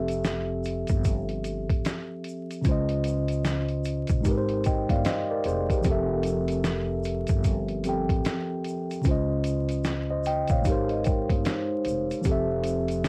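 A mellow tine electric piano sits up front, its clean tone softened by a low-pass filter and cassette tape as it carries Fmaj9, Dbmaj9 and Abmaj9 chords over a woody, growly pizzicato upright bass, a muffled, pitched-down sampler-style drum kit with a thumpy kick, and a grainy tube shaker in the background, all within this cosy lo-fi hip hop excerpt at 75 BPM with swung 16ths, light reverb and vinyl crackle on a home cassette recording, until a ringing soft-mallet vibraphone with analog delay enters in the background at 10.9 s.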